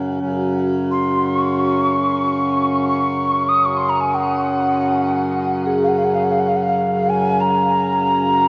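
Peaceful and calm, this free-time meditation music in Gb major drifts with a world meditative feel in a short cut from a longer piece. A hand-pumped harmonium holds a reedy, nasal drone up front from the start, its low, breathing tone sitting between Gb2 and Db3. From 0.3 seconds a vibraphone played with soft mallets adds a ringing, metallic texture in the background, its medium motor vibrato glinting through a shimmer reverb. At 0.9 seconds a mellow alto ocarina takes the melody between F5 and Eb6, its clay, airy voice tongued and carrying vibrato, sounding both distant and up front through shimmer reverb and delay. A huge, wet ambient reverb with a 6.1-second decay surrounds the whole piece, and a worn cassette-tape quality lends a warbling pitch drift to the sound.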